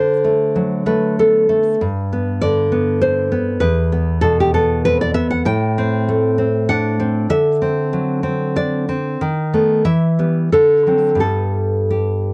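Warm and sunny, this romantic piece for solo nylon-string guitar moves in an unhurried three-beat lilt with a freely flexing, rubato pulse, in a brief 12.3-second passage cut from a longer work. The fingerpicked guitar sits up front with a full-bodied, deep classical tone, ranging from E2 up to G5 as it winds through a gentle progression that passes from D7 through G, Am7 and B7/D# before settling home on G. Light reverb and the soft grain of cassette tape color the recording.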